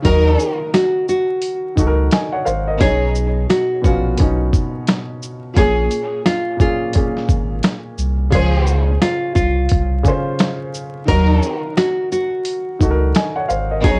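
A full-bodied, fingerpicked nylon-string guitar carries the melody up front in this confident boom-bap hip-hop excerpt, riding a swung 4/4 groove from a gritty, compressed sampler-style kit with a thumpy kick, medium-tuned snare, hi-hat and shaker. Beneath it, a dark, woody upright piano with audible action noise and short sustain plays accompaniment, lush bowed strings with vibrato add stabs through an analog delay, and a deep, round sine sub bass enters at 0.1 seconds. The whole piece has the intimate feel of a home cassette recording, with vinyl crackle and light reverb.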